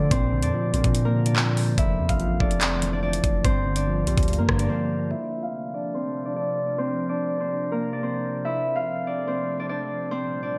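This menacing drill excerpt opens with a ringing, fingerpicked Celtic harp carrying the melody up front, softened by a low-pass filter. Beneath it sit a dark, clean electric guitar with lush chorus, a glassy, ethereal FM pad holding slow-attack chords in its own reverb, and a deep, sine-toned 808-style bass with long, decaying notes. An electronic drill kit of knocking kick, metallic hi-hats, handclaps and rim clicks drives a half-time feel at 144 BPM, treated with gated reverb. The harmony moves through Bbadd9, Fmaj7 and Gm7, and at 4.7 seconds the drums and bass drop out for a brief break. From 5.1 seconds the guitar is gone, and a filter sweep runs to the end at 10.6 seconds while the harp and pad continue over Dm7 and back through Bbadd9 and Fmaj7. The bright, 1980s-style digital production sits in a moderate plate reverb, lending the whole an ominous air.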